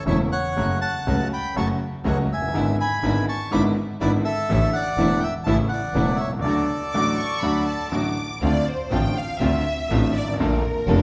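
A reedy, boxy bandoneon opens this elegant, passionate tango excerpt in D major at 122 BPM with a rubato feel, carrying the melody up front over a clear, deep-bassed vintage concert grand piano, an earthy, distant bowed double bass, and soft-attack sul tasto chamber string stabs in the background, before a smooth studio violin section with vibrato enters at 6.9 s with a second line and takes the spotlight from 8.4 s as the harmony shifts toward Dm7 and Bbmaj7, all in a moderate concert hall reverb.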